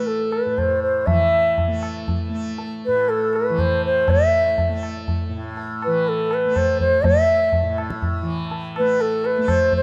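Longing and meditative, this Hindustani classical fragment in 3/4 sets a pure, bamboo-toned bansuri up front, singing with vibrato and tongued phrasing over a mellow, buzzing tanpura drone that shimmers softly beneath and a low-tuned, ringing tabla heard close, entering at 0.1 seconds, as the whole passage gradually speeds up in a rough home demo mix touched with light studio reverb.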